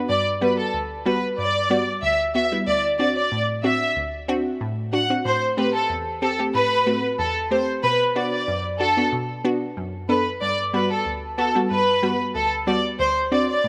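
Bouncy and summery, this dancehall excerpt moves at 93 BPM in G major with a straight 4/4 feel. A glassy, crystalline wavetable pluck with a detuned noise layer and chorus carries the accompaniment from the start, its fast-attack notes decaying, while a lush bowed violin section with a soft attack and expressive vibrato takes the melody from 0.1 seconds. Plate reverb adds space as the chords shift from Gmaj7 and D7 to Am7 and Bm at 5.3 seconds, before circling back to Gmaj7 and D7.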